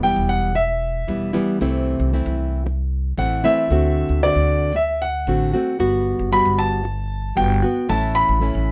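Light reverb gives this up-front, natural-sounding latin cut a gentle sense of space, moving at a danceable, sunny 114 BPM in straight 4/4 and G major. A warm concert grand piano carries a solo of high arpeggios across the whole 8.7 seconds, over a dark, fingerpicked nylon-string guitar playing classical-style accompaniment. A woody, thumpy pizzicato upright bass on gut strings anchors the changes from Em through C6, D7 and Gmaj7 to A.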